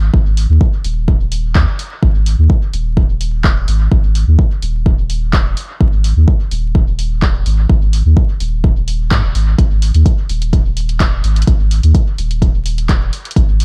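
An echo-heavy digital ambience flecked with vinyl crackle frames this nocturnal, hypnotic dub techno fragment, cut from a longer piece and moving at 127 BPM in a straight 4/4. A layered, tape-warm electronic kick sits up front with a small-room character and studio reverb, while a smooth, dark pure sine sub bass pumps with sidechain pressure from 0.0 seconds. A dry, punchy analog drum machine joins at 0.4 seconds, adding handclaps and hi-hat set back in the mix and trailed by studio reverb and dub echo.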